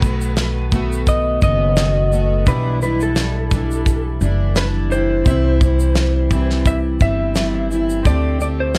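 A loose indie drum kit sets an unhurried 86 BPM groove in 4/4 with a gentle sixteenth-note swing, its fat snare, tight kick and shaker sitting up front beside a growly, thumpy pizzicato upright bass in this reflective, wistful acoustic pop excerpt in E minor. A full-bodied, double-tracked fingerpicked steel-string acoustic guitar carries the accompaniment through B7, Em7/B, C and D7sus4, while a very quiet, brilliant upright piano with short sustain adds woody detail underneath. Over the top, a compressed, slightly broken-up electric slide guitar sings the melody through a digital delay, all set in a dark, warm production with moderate studio reverb.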